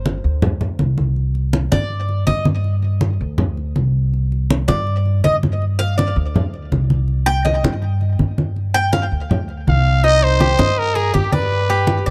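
Danceable and warm, this cut from a longer Cuban son and guajira piece moves in a straight four-four groove. A woody, growly upright bass with steel strings is plucked up front beside low-tuned congas with a thick skin, both sitting close in a dry small-room sound with a 1970s studio character. The Cuban tres takes the featured role through the first 10.0 seconds, its picked, metallic double strings, some doubled at the octave, spinning arpeggios through a tape echo, first in a brief flash and then steadily from 4.7 seconds. Underneath, the harmony alternates between G5 and C5 before shifting to Cm7 and G. At 9.7 seconds a raspy, punchy trumpet breaks in with a bright, gritty growl and light vibrato, carrying the melody into the closing section.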